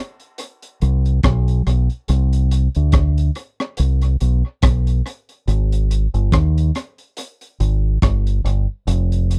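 Warm and sunny, this roots reggae excerpt settles into a relaxed 71 BPM groove in 4/4 with a gentle sixteenth-note swing. A crunchy breakbeat drum kit of hi-hat, kick drum and rim click starts at 0.2 seconds, its punchy kick and rolled-off top given a touch of tape echo. At 0.8 seconds a deep, round fingered electric bass joins up front, its dark tone sitting close and dry in a 1970s-style studio sound.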